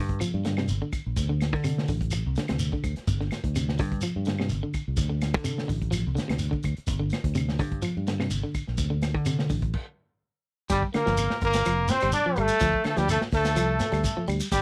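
Intense and funky, this afrobeat excerpt moves at 126 BPM in a straight 4/4 in G minor, with a dry, close 1970s-style studio sound and light reverb. A crunchy breakbeat drum kit sits up front, gritty and saturated with a punchy kick, dark cymbals and a rolled-off top, while a round, dark fingered electric bass anchors the low end. A twangy, picked electric guitar at the edge of break-up plays arpeggios over chords that shift between G and D shapes, with grainy shekere and woody claves tucked into the background. The band hits a stop at 9.7 seconds, then at 10.7 seconds a brilliant, roomy trombone takes the melody with a bright trumpet carrying a second line above it, its vibrato adding bite as the harmony moves to Gm7 and Dm7.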